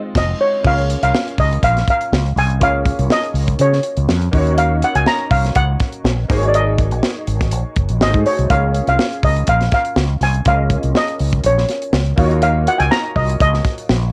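Nocturnal and slick, this polished 1980s jazz-funk pop passage moves at 122 BPM in 4/4 with a light sixteenth-note swing, and it is cut from a longer piece. It opens with a band accent in the first 0.6 seconds before settling into a groove over chords such as Fm7, Db6, Ebm7, Ab9sus4 and Ab7b9. A shimmering, metallic steel pan carries the lead melody up front, struck with medium rubber sticks for a smooth, dark tone coloured by cassette tape. A warm concert grand piano with deep lows supplies accompaniment further back, thickened by ensemble chorus and the same tape character. Underneath, a mellow fretless electric bass enters at 0.2 seconds with a round, direct and amped sound up front, alongside a dry funk drum kit of tight kick, medium-tuned snare, hi-hat and bright crash cymbal, all in light reverb with a home-cassette feel.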